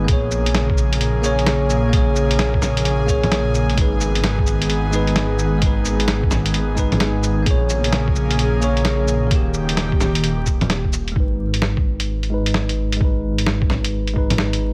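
A swung 4/4 groove at 130 BPM drives this melancholic, wistful future garage piece in G# minor, cut from a longer track. A thumpy, pitched-down electronic kick sits beneath a muffled, sampler-style kit of snare, hi-hat, bongos and cabasa, its medium-tuned snare placed up front, both drum parts dressed in studio reverb. A deep, rumbling detuned saw bass pumps against the kick, while a breathy, chorused pad holds soft sustained chords through A#m7, G#m and D# until it stops at 11.1 seconds. Over them a bell-like tine electric piano, clean and bright, plays accompaniment through a low-pass filter and dub echo, also pumping with the sidechain. From 11.2 seconds the music settles on G#m as a filter sweep moves across the electric piano, with vinyl crackle and light digital ambience hanging over the whole mix.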